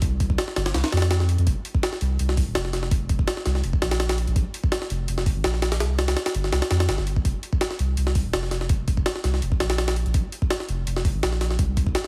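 Drum and bass with a jungle edge, dark and nostalgic, this short cut from a longer piece sets a gritty, pitched-up sampler-style drum kit with thumpy kick, high-tuned snare and hi-hat in a small room against a deep, round dub sub bass with tube saturation, both up front, all pressed into a heavily compressed radio sound dusted with vinyl crackle.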